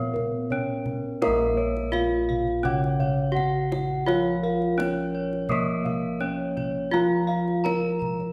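A straight 4/4 pulse at 84 BPM drives this shimmering, hypnotic fragment of Javanese gamelan in Bb pelog, where a bright, ringing bronze metallophone carries the melody up front over a second metallophone's accompaniment, struck with horn mallets. Round, beating bossed gongs supply both a deep bass line and higher arpeggios, with a tight kendang played with soft hands joining in the background at 0.2 s and a further metallophone arpeggio part entering at 1.2 s. The ensemble sits in the lingering reverb of a recital hall or church, which gives the metallic tones a resonant, spacious halo.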